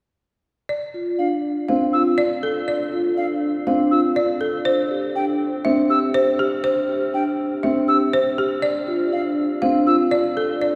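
This classical, minimalist pattern music moves at 121 BPM in a straight 4/4, with a hypnotic, propulsive mood, and it is cut from a longer piece. A folk marimba played with hard mallets carries the melody from 0.7 seconds, its woody, rustic, percussive tone sitting up front. A vibraphone with soft mallets spins arpeggios beneath it, metallic and ringing with a slow motor vibrato and a boxy small-room character, also close to the listener. Higher up, a hollow concert flute adds airy arpeggios with vibrato and a crisp attack, while a dark, mellow grand piano provides accompaniment on a single note, C4, from 1.7 seconds. The harmony shifts from Dm7 to C5 and back to Dm7, and the whole ensemble is set in a cathedral-like church or concert hall with a long, wet reverb tail.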